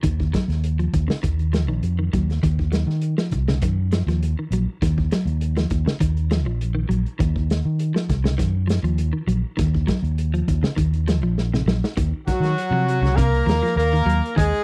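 An intense, hypnotic afrobeat groove opens with all three rhythm parts at once: a clean, picked electric guitar spinning dark arpeggios through a touch of spring reverb, a round, amped fingered bass sitting up front, and a crunchy breakbeat kit of hi-hat, punchy kick and medium-tuned snare. The drums sound saturated and gritty, with a rolled-off top and the close feel of a small room. The guitar sits lower in the mix than the bass and drums. A drum fill at 11.4 seconds leads into a new section, where the harmony shifts slightly. At 12.3 seconds a tight, clear horn section enters up front with a pop-style melody in octave doubling, colored by light vibrato. The dry, close 1970s-style studio sound keeps every part immediate, and the passage is cut from a longer piece.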